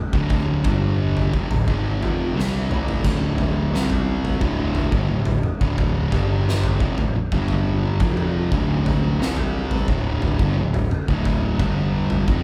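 An oversized, low-tuned acoustic drum kit with a punchy kick, fat snare, dark splash cymbal and toms sits up front in a bright, pumping stone room and fires a fill at 2.4 seconds, as a thick, distorted guitar riffs from D2 to C4 over D5, G5, Dm and C5 changes, a second darker guitar sits very quiet beneath it, and a growly, overdriven picked bass rumbles in the background, giving this sludgy, ominous stoner and doom metal excerpt at 88 BPM in D minor the feel of a band playing live in one large, reverberant studio room.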